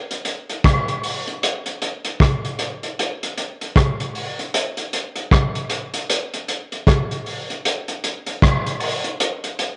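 Reggae with a laid-back, serious mood, this short excerpt features a lone vintage drum kit of hi-hat, tight kick and rim click, muffled and up front with a rolled-off top and the grit of an old 12-bit sampler, swinging lightly through a moderate spring reverb and a cassette tape haze.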